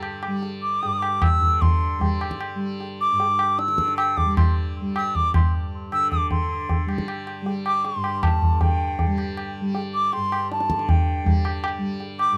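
A bright, reedy bansuri sits up front with a tongued, straight tone and a touch of tape echo, carrying the melody high in its range from 0.6 seconds in this radiant, meditative Hindustani piece in raga Durga on G. Beneath it, a softly plucked tanpura drone buzzes and shimmers, while a high-tuned, compressed tabla with a short, saturated ring keeps time close up in a 3/4 metre around 155 BPM. The tempo speeds up across this short cut from a longer performance, which moves into a second section at 6.3 seconds, all within a light reverb.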